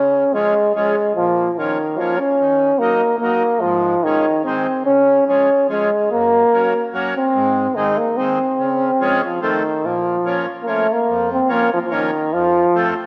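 Bouncy and festive, this alpine folk dance tune in three, cut from a longer piece, sets a clear, up-front euphonium with light vibrato and a vintage, classical-style solo line over a reedy, full and airy accordion accompaniment that sits further back. A second section begins at 9.9 s. The sound is bathed in a wet scoring-stage reverb and coloured by worn cassette tape with a warbling pitch drift.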